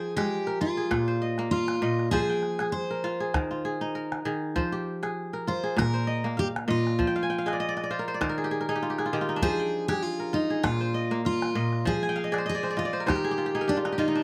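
A lightly swung 4/4 groove at 99 BPM carries this reflective, hypnotic piece of West African string and xylophone music in F dorian, circling between F minor and B-flat and E-flat power chords. A bright, ringing kora spins crisp fingerpicked arpeggios up front and adds fills at 7.1 and 12.0 seconds, while a full-bodied, fresh-stringed jumbo acoustic guitar picks the melody alongside it. A deep, vintage-toned, band-limited calabash keeps the pulse underneath, all captured with close, detailed microphones and a light reverb in this short cut from a longer piece.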